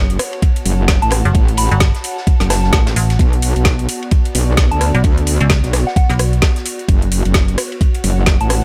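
Aggressive, gritty bass house cut from a longer piece at 130 BPM in F# minor, swung on the 16ths, where an up-front, saturated metallic wobble bass and an overdriven metallic FM bass arriving at 1.3 seconds pump against a knocking, overdriven electronic kick and a layered garage kit with woody snare and metallic hats, while a dry acoustic soul kit with ride sits in the background, a breathy, warbling pad drifts beneath, and a soft, pure synth bell with chorus and digital delay enters at 1.0 seconds over chords moving from F#m to Bm and back, all kept dry with little reverb.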